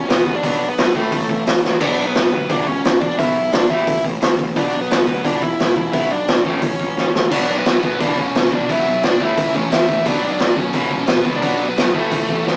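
A rough rehearsal-room recording with tube saturation, a small-speaker sound and little reverb captures a raw, aggressive punk rock excerpt in B minor at 175 BPM: an up-front, boomy, gritty garage drum kit with fills at 1.6 and 7.0 seconds drives a growly fuzz bass and a bright overdriven electric guitar riff beneath a dark, distorted bluesy lead guitar melody, and at 7.3 seconds two more distorted guitars join the riff, one double-tracked and high-gain, the other compressed and very quiet.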